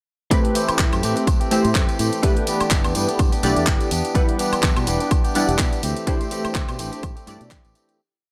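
A dry hardware recording of groovy, funky filtered disco house at 125 BPM in A dorian with a light 16th-note swing, where a punchy four-on-the-floor electronic kick sits up front beneath tape-warm house drums of handclaps, hi-hats and woodblock and a distant tambourine, a round, foam-muted fingered electric bass enters at 0.7 s with a syncopated line, a detuned sawtooth polysynth with chorus and phaser holds rootless chords with syncopated pushes over Am7, G6, Em7 and D9sus4, and a bright, twangy clean electric guitar with vintage 12-bit sampler grit strums sixteenths in upper chord shapes, with sidechain pumping on the synth, guitar, bass, hats and percussion before a fade-out from 5.4 s.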